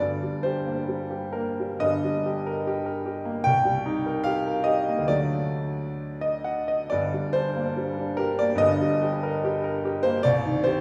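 Classical romantic character piece for solo piano in G minor, passionate and brooding, moving in a rubato 2/4 at 61-76 BPM through a short passage cut from a longer work. The clear concert grand sits up front with a deep bass and long sustain, ranging from G1 to G5 over chords that pass from Gm through Cm7 and D, back to Gm, then Eb/G and Cm. A wet reverb of about 1.7 seconds gives the natural tone a church or concert hall ambience.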